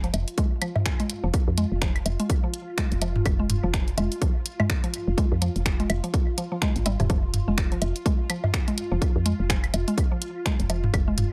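A mallet-like FM pluck riff, a soft, round FM bass and an overdriven house kit of finger snaps and hi-hat open this quirky, sparse minimal techno cut in F minor at 125 BPM with a swung 16th-note feel, joined almost at once by tape-warm electronic woodblock, claves and toms. A punchy, overdriven electronic kick sits up front from 0.4 seconds, while a swarming, detuned drone on F4 hovers low in the mix with a granular, reverberant haze. Sidechain pumping moves the pluck, bass and drone, the nasal, woody pluck also carries chorus and tape echo, and a light reverb frames the mix.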